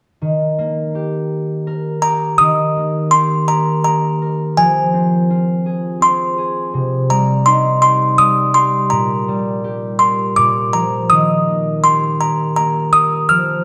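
A children's lullaby in Eb major, swaying gently in 3/4 at 83 BPM with a tender, sleepy mood, taken from a longer piece. A ringing, thumb-plucked concert harp opens the accompaniment at 0.2 seconds, and a delicate, tinkling music box enters with the melody at 2.0 seconds, its bright, slightly out-of-tune voice sitting up front and a touch louder than the harp. The chords move from Eb through Fm, Cm and Bb before settling back home on Eb, all set in a moderate recital-hall reverb with a dark production.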